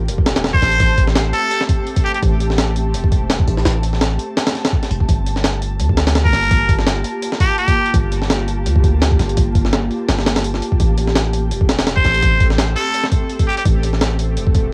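Raw and frenetic, this short cut from a longer drum and bass track rides a jungle groove at 168 BPM in 4/4, with a light swing on the sixteenths. A gritty, pitched-up sampler-style drum kit sits up front, its thumpy kick, medium-tuned snare and hi-hat compressed and tape-worn as if re-recorded in a small room. Underneath, a deep, sine-toned 808-style bass holds long, decaying notes with a touch of tube saturation, while an ethereal, airy pad with detuned unison voices, ensemble chorus and reverb drifts through sustained chords moving from Am7 to Gm9 and back to Am7. A trumpet with a straight mute cuts in with brief solo phrases at 0.5, 6.3 and 12.0 seconds, sounding nasal, raspy and growling, with light vibrato, 12-bit sampler grit and dub echo trailing its lines. The whole mix carries the tape-worn character of a home cassette recording with vinyl crackle and a light reverb.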